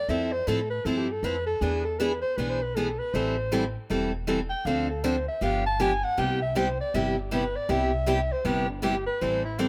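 Swinging and charming, this brief cut from a longer acoustic string swing piece features a breathy, whispered soprano saxophone soloing intimately up front over a bright, picked steel-string acoustic guitar and a woody, thumpy upright bass, all bathed in moderate spring reverb as the chords move from Fmaj7 through E7, Am7, Dm7 and G7 to settle on Cmaj7 at 6.2 seconds.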